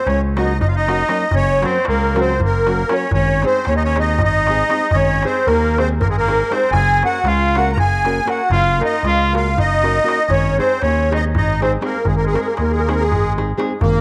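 Balkan folk in the manner of a Balkan wedding band, this exuberant, virtuosic fragment of a longer piece drives along at 235 BPM in eighths, in a straight 7/8 in Ab mixolydian, with chords alternating between Gb and Ab. A reedy, shimmering musette accordion carries the melody close-miked and up front, while a clear trumpet with light vibrato plays a classical-style second line from a distant, roomy position, and a growling, thick FM bass with sustained notes anchors the low end. A crisp, deep metal-shell darbuka struck with hard hands sits in the background, a dark fingerpicked nylon-string guitar with audible finger squeak enters at 0.4 s, and a moderate spring reverb surrounds the whole.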